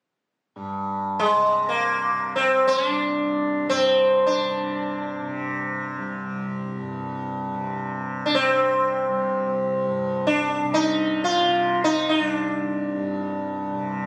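This Indian classical excerpt has a solemn, meditative mood, opening at 0.6 seconds with a softly plucked, warm tanpura drone that sits low and quiet beneath the melody. From 1.2 seconds, a bright, plectrum-plucked sitar carries the melody up front, its buzzing tone shimmering with sympathetic strings. The sound is fairly dry, captured on a phone in the room.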